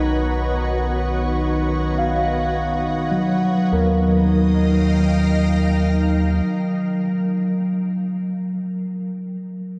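Peaceful and warm, this free-time ambient excerpt drifts through a dark production bathed in lush hall reverb, moving from a Badd9 chord to Ebadd9 at 3.7 seconds. A soft, organ-like additive pad holds sustained chords with a pure, slightly detuned shimmer, its ensemble chorus and built-in reverb lending a bright, evolving glow. A mellow tine electric piano carries arpeggios through the whole passage, its clean tone scattered by a diffuse ambient delay and lasting until 9.8 seconds, after the other parts have stopped. Beneath, a round analog bass sits deep and saturated, while an analog drone adds a vintage, warbling layer softened by chorus. In the background, a glassy, ethereal glass harmonica holds a single note, dry and close, and drops out of the texture at 3.7 seconds.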